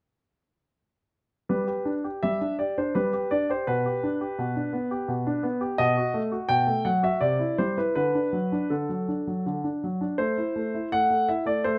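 In a flexible 3/4 at 83 BPM, shaped with rubato, this playful, cheerful classical-period piano sonatina in G major unfolds as a short passage cut from a longer piece. A solo concert grand plays from 1.5 to 11.8 seconds, its clear, natural tone placed up front with deep bass and long sustain, moving through G, G/B, B7, C, D and Am. A moderate large studio reverb gives the piano an open sense of space.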